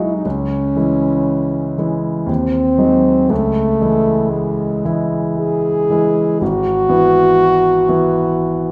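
A mellow French horn sings a solemn, elegiac melody up front in this romantic classical duo in C# minor, unfolding in a rubato 3/4 at 54-62 BPM over an intimate concert grand piano whose deep bass, smooth vintage tone and audible action noise carry the accompaniment from C#m through G#7/D# to E/G#, the pair set in a wet recital hall across an 8.7-second passage cut from a longer piece.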